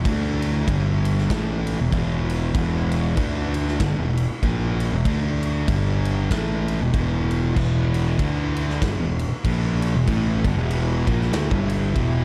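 Brooding and heavy, this short stoner and doom metal excerpt moves at 96 BPM in E minor with a loose swing, built on an up-front thick fuzz guitar riff over a growly, overdriven fingered electric bass and a big, natural-sounding rock kit with a punchy kick, medium-tuned snare, crash and ride. A very quiet, warbling organ-like drone holds detuned sustained chords with a slow attack beneath, while a second, darker fuzz guitar joins in the background at 7.6 seconds. The production is dark and lightly reverberant, cycling through D5, G5 and E5 power chords and an Em chord.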